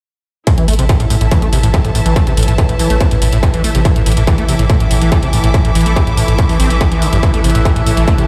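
Straight 4/4 driving peak-time techno, intense and relentless and cut from a longer piece, where a distorted, up-front electronic kick and an overdriven hi-hat push a squelchy, resonant acid bass riff with filter sweeps and cassette-tape grit, while a deep sine sub bass pumps underneath, a lush bowed string section adds vibrato texture up high, and from 1.2 s a drone with moving overtones joins, the mix heard through a big sound system in a bare stone room.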